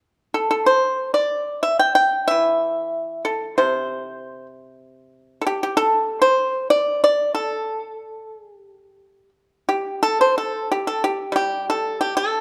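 Chinese traditional solo plucked-string music, this short excerpt cut from a longer piece carries an elegant, contemplative mood at a rubato pace in 4/4. A lone pipa carries the whole performance, entering at 0.3 seconds and ringing until 12.4 seconds across a range from C3 to G5. Played with fingerpicks, the instrument sounds acoustic, percussive and dry at the source, sitting up front in the mix. A moderate recital hall reverb surrounds the playing, and the production leans dark and warm overall. The music moves from its opening section into a new section at 10.0 seconds, and the fragment breaks off at 12.4 seconds.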